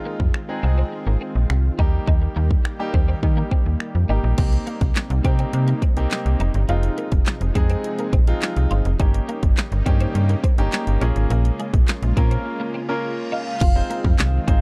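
A straight 4/4 pulse at 104 BPM drives this confident dance-pop passage in F minor, with a punchy, up-front pop drum kit of kick, fat snare, hi-hat, crash, finger snaps and handclaps, and a snappy, metallic FM slap bass, the bass set to sidechain pumping along with the clear baby grand piano and a lush supersaw pad in the background. A clean, compressed twelve-string electric guitar riff with ensemble chorus sits over chords moving from Fm7 through Cm7, Eb7/G and Bbm7. A break at 12.5 seconds brings an electronic reverse cymbal, and a velvety synth lead with chorus, tape echo and portamento enters on F5 at 13.3 seconds, joined by a crisp, very quiet group handclap, all within a dark production that has little reverb.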